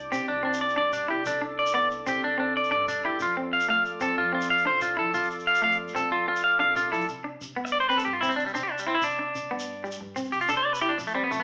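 A bright, twangy clean electric guitar sits up front, spinning arpeggios and then taking a solo from 7.1 seconds in this joyful, danceable highlife excerpt at 123 BPM in a straight 12/8, in C major. A bright, clean semi-hollow electric guitar picks accompaniment while a lightly overdriven tonewheel organ with slow rotary speaker holds full sustained chords until 7.1 seconds, as a woody, thumpy gut-string upright bass stays in the background and a grainy, close shekere keeps the pulse over a Csus2 and F progression. The band sounds like it is playing live in one room, bathed in a wet studio reverb with a lo-fi AM radio character.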